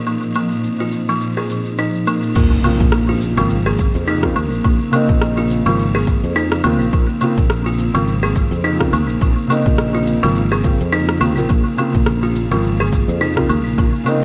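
Meditative and earthy, this organic downtempo excerpt moves with a gentle swing in 4/4. A buzzing, woody kalimba sits up front with ringing arpeggios and tape echo, over a soft, felt-muted upright piano whose audible action noise and tape echo give it an intimate, boxy character, while sidechain pumping makes it breathe. A cloudy granular pad holds very quiet, blurred sustained chords beneath them, and a barely audible bronze singing bowl rings with slow beating through the opening 2.4 seconds. An overdriven deep house kit of crash cymbal, rim click and shaker enters at 0.1 seconds. At 2.4 seconds a background electronic impact marks the arrival of a deep, overdriven kick drum, re-recorded in a large room, and a growly fretless electric bass with ensemble chorus. Light reverb and a digital ambience frame the whole.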